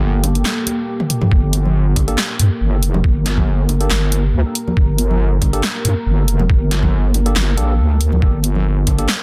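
Meditative and brooding, this short deep dubstep excerpt in G minor moves at 139 BPM with a swung half-time feel over a single Gmadd9 chord, where a dark sawtooth pad with chorus and its own reverb sustains beneath a heavy, detuned square-wave wobble bass up front, a punchy deep house kit of handclaps, hi-hat, snare and toms joins at 0.2 seconds with bright bongos and congas echoing in the background, a gritty pitched-down kick arrives after a brief drum fill at 1.3 seconds, and a clean tine electric piano adds dub-echoed stabs from 2.1 seconds, all in a dense, heavily limited master.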